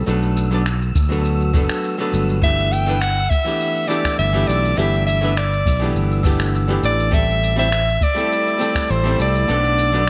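Smooth and warm, this sunset chillout excerpt opens on a dark, clean hollow-body archtop guitar with tape echo, a growly, up-front fretless electric bass with tube saturation, gritty compressed electronic shaker and finger snaps, and an airy wind-like noise texture in the background. A deep, overdriven electronic kick drum arrives at 1.0 s, and at 2.4 s a breathy soprano saxophone with light vibrato takes the jazz-style solo lead, colored by 12-bit sampler grit and delay. The harmony moves from Bm7 through G69 and Am7 under a light reverb.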